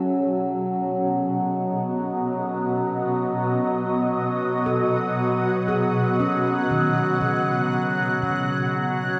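A shimmering, ethereal pad sits up front in this brief ambient passage, holding sustained chords from B2 to F#5 with an octave-up shimmer, detuned unison voices, slow attacks and long releases that give it a dark, granular glow under chorus and built-in reverb. Alongside it, an overtone-sweeping drone, also up front, holds F#3 throughout, its nasal, resonant tone carrying moving overtones, also with chorus and reverb. At 4.7 seconds a handpan enters with ringing, meditative arpeggios struck with the fingertips, its nitrided steel voice sounding boxy and trailed by dub echo. The mood is reflective and melancholic at a slow 59 BPM in 4/4, with the harmony moving from B to A6/C# near 8.2 seconds. Soaked in a wet echo chamber reverb, the echo-heavy mix suggests a fragment lifted from a longer piece.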